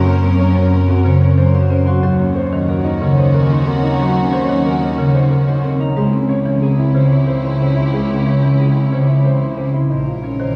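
A clear, focused double bass section bowed up front anchors this hypnotic, meditative stretch of minimalist classical pattern music in 6/4, sounding from the very start together with the piano, strings and harp, and joined at 0.1 s by a buzzing, woody marimba played with medium mallets on hardwood bars. A mellow, boxy baby grand piano spins dark arpeggios with audible action noise, a lush string section holds smooth chords with vibrato, and a bright, thumb-plucked Celtic harp rings out the melody above. The chords move from Gb through Ebm7 and Dbm to Bbmadd9, all bathed in a long cathedral reverb in this excerpt cut from a longer piece.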